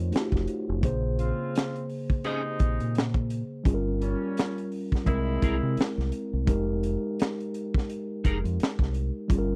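R&B with a neo-soul lean, this short excerpt has an introspective, sultry mood, swinging gently over a progression that settles on Fm11. A mellow tine electric piano and a round, deep dub fingered bass play throughout beneath a gritty, saturated breakbeat kit with a punchy kick and high-tuned snare. Dark, tight horn stabs with light vibrato arrive at 1.2 seconds, and a clean, picked electric guitar with ensemble chorus adds a second line from 2.2 seconds, all captured in a dry, close 1970s-style studio sound.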